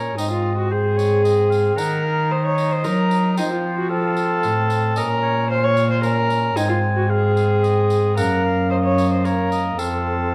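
Solemn and courtly, this fragment of a longer renaissance-style consort dance moves in 3/4 at 112 BPM, with a vintage-toned oboe carrying the melody in light vibrato over an up-front, nasal gut-string viola on the second line, a distant, mellow bassoon accompanying, and a dark, smooth-topped cello holding the bass, while a faint jingly tambourine sits behind them all in a stone room whose 1.3-second reverb gives the dark production an antique glow.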